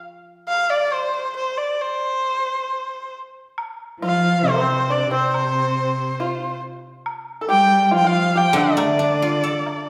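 A silvery, ringing guzheng, plucked with fingerpicks, opens this festive, pastoral Chinese chamber ensemble excerpt, which moves in a rubato 2/4 at around 69 BPM. At 0.5 seconds a single bowed erhu takes up the melody up front, its nasal, earthy tone shaded with light vibrato and portamento. From 3.6 seconds a woodblock sits in the background. At 4.0 seconds the pipa and a bowed cello add second lines: the pipa dry and percussive under fingerpicks, the cello focused and warm with vibrato. The guzheng returns near the close to accompany the others again. The ensemble is heard from further back in a reverberant recital hall, which lends the cut-off passage a spacious glow.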